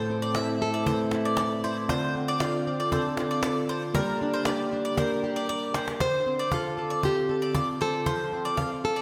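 A tender, wistful acoustic pop passage opens with a dark, deep classical nylon-string guitar melody over a full-bodied, double-tracked fingerpicked steel-string guitar, a reedy, mellow electric piano and bright, double-string mandolin arpeggios carried on a digital delay, with a woody cajon and faint snares joining at 0.3 seconds. The nylon guitar falls silent at 1.6 seconds, then returns at 6.0 after a cajon fill, as the electric piano drops out and the chords move from Am through Dm7 and Gm to F. A lush hall reverb and bright 1980s-style digital production give the piece a glossy sheen.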